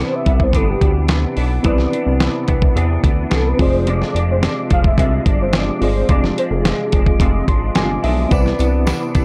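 A straight 4/4 groove at 108 BPM from a gritty, compressed sampler-style drum kit with a thumpy kick and fat snare drives this hazy, sunny bedroom-pop snippet in C major, where a mellow, chorused synth bass sits up front under clean picked semi-hollow guitar with chorus and vibrato, a reedy fast-tremolo electric piano that adds a fill at 7.2 seconds, and a soft, round octave-layered synth lead with tape echo carrying the melody over Cmaj9 and Fm6 chords, while a jingly tambourine joins in the background at 8.3 seconds, all in a dry, gritty hardware sound.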